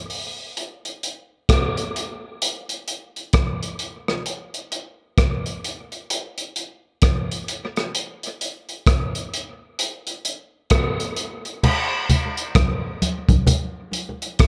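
Meditative and spacious, this short reggae fragment, cut from a longer piece, moves at an unhurried 65 BPM in 4/4 with a 61% swing on the sixteenths. A crunchy breakbeat drum kit runs from 0.1 seconds to the close, its saturated, gritty tone sitting up front with a mid-forward character, a tight kick, rim clicks, hi-hat and crash cymbal, and a rolled-off top end. At 11.6 seconds the arrangement shifts into a new section as congas enter, played close with hard hands on a bright, thin-skinned, medium-tuned drum. Dub echo trails the congas until they stop at 13.7 seconds. Moderate spring reverb with a 2.4-second decay and an echo-heavy mix give the sparse arrangement its airy, drifting sense of space.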